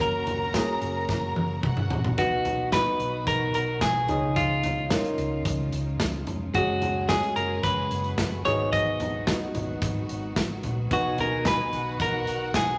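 Wet, spacious studio reverb and a layer of vinyl crackle frame this hopeful, anthemic piano-driven pop passage, cut from a longer piece. A clean, compressed electric guitar carries the melody up front over a polished grand piano with long sustain, lush bowed studio strings holding chords in the background, a round, hollow-body fingered electric bass, and a punchy, airy acoustic drum kit that plays a fill at 1.1 s. A focused symphonic violin section adds a second line at the start and drops out at 2.2 s while the harmony moves through B, C#add9, F#sus2 and G#m7, then returns at 10.9 s as the chords arrive back on B.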